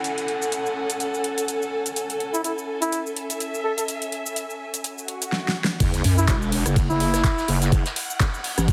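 Heavily compressed into a radio-like sound and set in a moderate, lush hall reverb, this swaggering, aggressive bass house excerpt opens with an overdriven big-room dance kit that is up front, with a huge snare, metallic hi-hats, handclaps, rim clicks, shaker and crash cymbal under a filter sweep. A bowed chamber string section, dark and expressive with soft attack, vibrato and sidechain pumping, holds a minor add-nine chord, while electronic downlifter, swell and sub-drop effects sit in the background. At 2.3 seconds a trumpet with a bucket mute enters as a veiled, vintage, jazz-style solo with vibrato, scooped notes and dub echo. A drum fill at 5.3 seconds leads into the drop at 5.8 seconds, where a heavy, resonant wobble bass of detuned unison square and sine waves arrives saturated, with chorus, overdrive and sidechain pumping, alongside a layered, tape-warm knocking electronic kick. 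Also entering at the drop, a distant, roomy brush kit with a rolled-off top plays a ride cymbal and medium-tuned snare. Its shadowy cymbals pump, and high-pass filtering thins the cymbals, snare and room.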